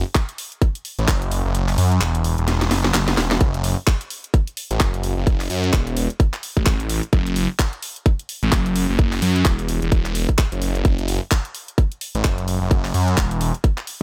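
This short excerpt of aggressive, swaggering bass house opens on a thick, swirling detuned saw bass, its saturated sawtooth tone run through a phaser and pumping against the sidechain as it moves between E1 and F#2. A garage drum kit of handclaps, hi-hat and snare follows almost at once, sitting lower in the mix with a cracking snare and warm hats. A tight, layered electronic kick lands up front at 0.2 seconds, driving the 129 BPM groove in F# minor with a 59% swing on the sixteenths. The kick drops out at 1.5 seconds, and a drum fill arrives at 2.5 seconds before it returns at 3.4 seconds. A digital ambience surrounds the parts, and the track is tuned to A4 = 435 Hz.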